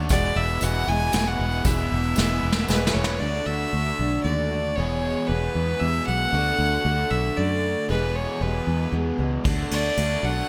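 Folk rock and heartland rock with a nostalgic, open-road mood at 115 BPM in 3/4, this cut from a longer piece moves between E and D chords in E mixolydian. A biting, up-front bowed fiddle with light vibrato leads over a round, dark fingered bass, a picked acoustic guitar with lush chorus and a double-tracked overdriven electric guitar riff. A soft brush drum kit with gated reverb, a jingly tambourine, a very quiet baby grand piano and a slow-rotary tonewheel organ color the opening. The drums stop after a fill ending at 3.2 seconds, then return with the organ at 9.4 seconds, framed by bright 1980s-style digital production and plate reverb.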